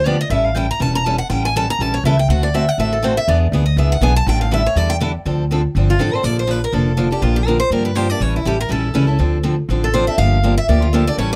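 A bright parlour guitar with fresh strings opens a fiery, virtuosic jazz manouche solo in D minor at a swinging 243 BPM over a woody, thumpy pizzicato upright bass on gut strings, joined at 0.1 seconds by a boxy second acoustic guitar picking chords that move from A7 through Dm7 and Bbmaj7 to Gm7, with every part up front in a dry, closely miked, detailed sound.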